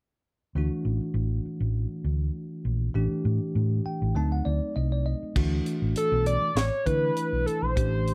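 A light 16th-note swing in 4/4 carries this bright, slick stretch of electric jazz fusion, cut from a longer piece. A bell-like tine electric piano and a round, hollow-body fingered electric bass with a dark, amped tone open together at 0.6 seconds, moving through chords like Dadd9 and D7b9, and the piano adds a fill between 3.6 and 5.4 seconds. At 5.4 seconds a tight funk drum kit joins with dry, high-tuned snare, tight kick, crash and hi-hat under crisp cymbals as the passage shifts to a new section on D69. An overdriven synth lead enters at 6.0 seconds in a narrow upper range, its gritty, screaming, guitar-like sawtooth and pulse tone detuned and sustained, colored by distortion, chorus, vibrato and plate reverb. All four parts sit up front in a lightly reverberant space, with the lead and bass standing out most.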